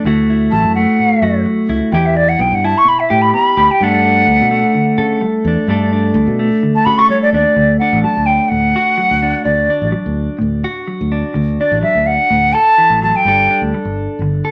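A straight, danceable 4/4 pulse at 127 BPM drives this sunny highlife guitar band excerpt in D major. A dark, picked, compressed clean electric guitar with spring reverb sits up front alongside a round, punchy fingered electric bass, while a pure, hollow silver concert flute with vibrato and a crisp attack carries the melody, soloing through the opening 7.6 seconds before the second section begins. A short, wet studio reverb surrounds the band.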